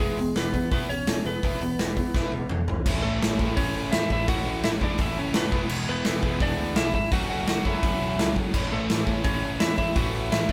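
A straight 4/4 pulse at 169 BPM drives this rowdy, upbeat punk rock passage in A major, where a big, natural acoustic drum kit with a punchy kick sits up front and rolls through a fill at 2.1 seconds, a bright, overdriven, double-tracked semi-hollow guitar riffs under a slightly broken-up, compressed lead guitar melody, a growling overdriven bass rumbles in the background, and a thick fuzz guitar joins at 2.9 seconds as the chords move from E to A, E, F#m and back to A, the band playing together live in one room with light reverb.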